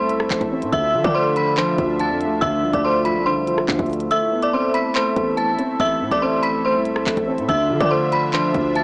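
This short cut from a longer track has a lo-fi, cassette-worn sound with light reverb, as if played back through a small speaker. It is a menacing, tense drill beat in A minor at 142 BPM, felt in half-time. A metallic, inharmonic FM bell carries the melody up front, bright and ringing with chorus and tremolo. Beneath it, a dark, boxy concert grand piano plays the accompaniment, and a smooth, detuned sawtooth analog pad holds sustained chords. A punchy, heavy 808-style bass anchors the low end, and the electronic drill kit enters at 0.1 seconds with a knocking kick, crisp hi-hats, handclaps and rim clicks, roughened by 12-bit sampler grit. The kick drops out from 4.1 to 5.0 seconds, while the harmony moves between Amadd9 and Dmadd9.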